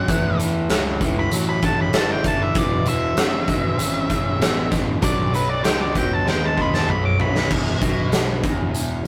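A dark, fuzzed lead electric guitar solos from the start until 7.5 s over a bright, double-tracked garage guitar riff, a growling overdriven bass in the background and a punchy, up-front acoustic rock kit with a drum fill from 6.3 s, giving this raunchy, driving blues rock and southern rock excerpt at 97 BPM a rough rehearsal-room sound with tube saturation as the chords move from A7 through E and B to land on E5.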